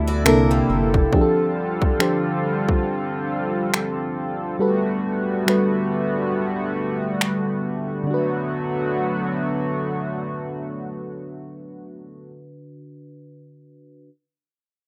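A rough home-demo mix in a small room carries this dreamy, tender contemporary R&B fragment, where a round, full-bodied FM electric piano with chorus and a shimmering, warbling pulse-width pad hold the harmony, a rubbery square bass and a woody picked archtop guitar with digital delay sound only briefly before 1.1 seconds, and an up-front trap kit of finger snaps and hard-clipped kick plays until 7.4 seconds.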